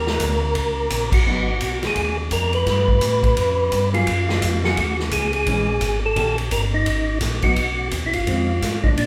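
A live, one-room sound in a large studio reverb frames this late-night, soulful soul jazz organ trio cut at 171 BPM in swung 4/4: a percussive tonewheel organ with third-harmonic percussion, light overdrive, chorus vibrato and fast rotary speaker carries the melody; a round, dark second tonewheel organ on slow rotary plays the bass; a punchy, up-front big-band drum kit swings on ride, hi-hat, snare, kick and crash; and a clean, fingered hollow-body guitar comps in the background, stopping at 1.5 seconds and returning at 3.9, while a band accent lands at 1.1 seconds over chords moving from Eb7 through Abm7, G9 and Gbmaj7sus2 to Fm7.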